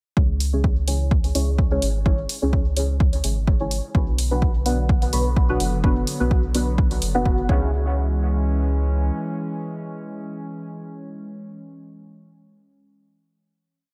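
A lightly reverberant, nocturnal dub techno piece opens with a dry, punchy overdriven kick pounding four-on-the-floor under overdriven open hats, a round, soft sub bass with long gliding notes, and dark, mellow chord stabs that move one shape in parallel through dotted rhythms, smeared with chorus, phaser and dub echo and pumping against the kick. At 4.0 seconds a warbling, lo-fi tape-like pad fades in with detuned, nostalgic sustain, as the harmony moves from C#m to Bm and back. The drums drop out, and the bass lingers into the final hit from 7.7 seconds until about 9.1 seconds, after which the stabs and pad ring on to the close.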